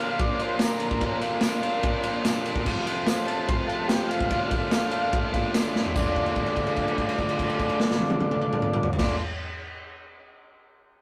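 A biting, double-tracked overdriven guitar riff drives this menacing, raw garage rock excerpt in D minor at 146 BPM alongside a raw, punchy garage drum kit, a buzzy combo organ melody with heavy vibrato over reedy background organ chords, and a jingly tambourine until 6.1 seconds, with an organ fill and drum fill leading at 6.0 seconds into a held note, all caught in a rough rehearsal-room recording with stone room reverb.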